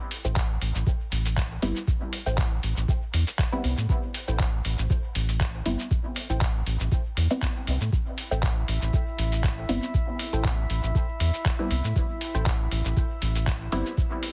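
Heavily compressed, radio-like digital ambience frames this hazy, nocturnal dub techno cut from a longer piece, with a gently swung groove resting on a single Am7 chord. An overdriven electronic kick, deep and analog-toned and set in a small room, anchors the pulse alongside a round, dark analog bass that sits up front and pumps against the kick. A muffled, pitched-down sampler-style kit of cabasa, handclaps and hi-hat drifts through a large room and trails off in dub echo. A muted, detuned chord-stab riff carries phaser, pumping and echo, and from 1.6 seconds a lower filtered stab part adds chorus to those same effects. At 8.3 seconds a calm, glassy texture of drifting overtones fades in slowly with chorus and its own reverb, breathing in time with the pumping until the close at 14.3 seconds.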